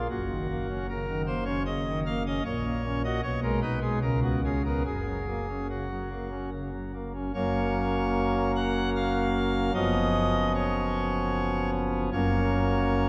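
In a flexible, rubato triple metre, this short excerpt from a longer classical chorale-style piece carries a reverent, majestic mood. A single pipe organ plays alone on a nasal cornet solo stop with romantic voicing, sitting up front and spanning from deep low notes to a bright upper register. The playing rests on rich, extended chords that settle onto the home chord near 4.9 seconds and again at 12.1 seconds, all bathed in a lush, lingering church reverb.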